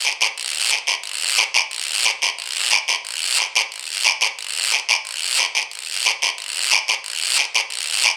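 A raspy acoustic guiro opens this short Latin percussion fragment, sitting up front in a small room and carrying a driving, passionate energy in straight 4/4 time. Captured with close, detailed microphones and a light touch of reverb, it plays alone for the full 8.2 seconds, cut from a longer piece.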